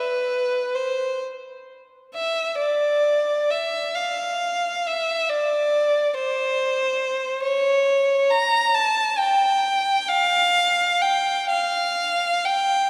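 A classical piece for unaccompanied violin, cut from a longer work, unfolds in a free, rubato 6/8 at roughly 41-48 BPM in dotted quarters, carrying a lonely, yearning mood. A single bowed violin sits up front with a rich, focused tone and vibrato, moving between B4 and Bb5 for the full 12.9 seconds. A long church reverb of about 3.0 seconds surrounds the instrument, lending the performance a spacious, resonant setting.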